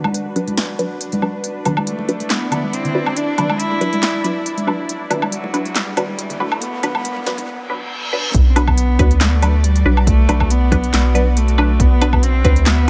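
A half-time deep dubstep groove with a light 16th-note swing drives this heavy, dark excerpt from a longer piece, with a soft, round sub bass up front and an electronic drum kit of punchy snare, smooth hats, handclaps and woodblock also sitting forward, while vintage congas with soft hands play until 7.5 seconds. Above them a tense, string-like drone holds sustained chords with vibrato and its own built-in reverb, and muted, detuned chord stabs pluck through phaser and dub echo under a filter sweep that shapes the build-up. A nasal, boxy cello played by one bowed player carries the melody from 1.9 seconds, its vibrato trailing into dub echo. Electronic risers and a reverse cymbal rise in the background toward the drop at 8.3 seconds, where a layered electronic kick joins the groove. The mix has light reverb, a digital ambience and a high-pass filter.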